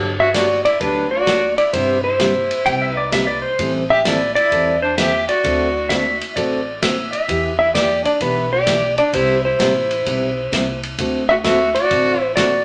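A wet studio reverb gives this down-home western swing excerpt a roomy glow, with a dark, clean lap steel guitar up front carrying the melody in slide phrasing and volume swells. A biting, airy-bowed fiddle adds a second line beneath it, while a bright, full-bodied steel-string acoustic guitar picks the chords with a little finger squeak, a woody, thumpy upright bass holds the bottom, and a vintage drum kit with a punchy kick and rolled-off top keeps a swinging groove on hi-hat, snare and ride. From 2.7 s to 7.4 s, a warm pedal steel guitar joins with its own swelling slide line, played with fingerpicks.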